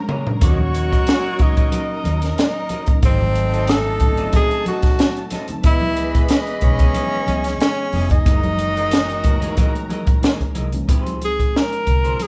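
A band playing live in one room fills a large studio with moderate reverb in this lush, smooth 1970s-style soul piece at 92 BPM, with a gentle 16th-note swing. The dry, up-front cocktail kit, with its high-tuned snare and punchy kick, opens with a fill before the breathy tenor saxophone takes the melody from 0.4 s, its scooped notes and vibrato riding over a dark, round, foam-muted electric bass and very quiet hard-handed congas. In the background sit a mellow, clean tine electric piano, a bright, twangy guitar riff through a slightly broken-up small amp, distant bowed strings and roomy jazz-style horn stabs, moving through D#m7, G#7b9, C#m9 and F#13 before a Dbmaj7 arrives at 10.9 s.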